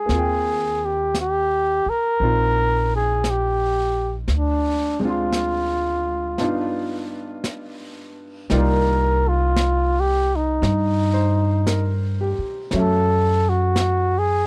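A dry, close recording with a 1970s studio sound and little reverb frames this tender, romantic jazz ballad at a slow 57 BPM with a gentle swing in 4/4. A warm, close-miked flugelhorn sits up front with the melody, its soft attack, light vibrato and scooped notes floating over a clear, smooth upright piano with a vintage, short-sustained tone, a dark, thumpy gut-string upright bass played pizzicato, and a quiet brushed snare and hi-hat. After a break at 6.4 seconds, the flugelhorn takes a solo from 8.5 seconds over harmony moving from Cm11 to Gbm7.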